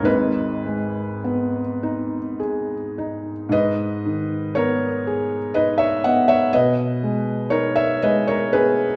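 Melancholic and wistful, this brief, unhurried classical romantic nocturne in 3/4 sets a lone felt-muted upright piano up front, its soft, mellow, intimate tone ranging from G#1 to F#5 with rubato phrasing, all bathed in a wet recital hall reverb as it moves from an opening passage into a second section at 3.5 seconds, cut from a longer piece.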